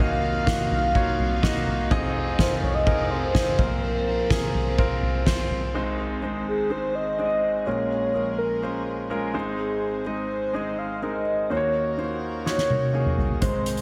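A horn-like, warbling synth lead with chorus carries the melody over a clear, up-front concert grand piano with slapback echo and audible action noise, while a reedy, gut-string chamber section holds sustained chords in the background, as soft-mallet drums with a boomy kick join at 0.2 seconds, drop out at 5.6 seconds and return with a fill at 12.5 seconds in this dramatic, driving piano-driven pop excerpt bathed in lush hall reverb for a big arena sound.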